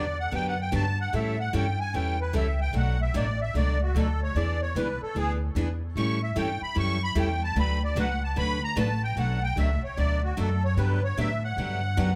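Heard from further back in a wet club reverb, this lively, swinging jazz manouche clip at 149 BPM in D major features a reedy, shimmering musette accordion soloing on the melody up front with tape echo, a bright picked steel-string acoustic guitar with fresh strings and audible finger squeak providing accompaniment, and a woody, thumpy pizzicato upright bass on gut strings up front, with all three playing from the start through about 12 seconds over changes that begin Gmaj7, A7, Bm7, E7.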